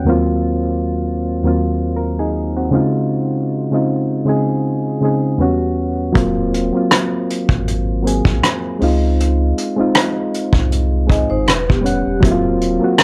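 Lo-fi hip hop in Eb dorian at 79 BPM, this cut from a longer piece carries a swung 16th-note feel and a nostalgic, hazy mood. Soft electric-piano-like synth keys open alone, round and gentle with a warbling chorus and cassette-tape tint, moving through Ebm69, Dbmaj9 and Em69 chords. At 6.2 seconds a vintage brush drum kit arrives up front, its tight kick, hi-hat and rim click set in a small room with a rolled-off top, alongside a deep, sine-like sub bass. Very quiet finger snaps join at 6.9 seconds. A metallic, ringing vibraphone played with medium mallets appears briefly near 11.1 seconds, dry and close-miked with slow motor vibrato and a tape echo. Light reverb and cassette tape coloring give the whole recording its faded character.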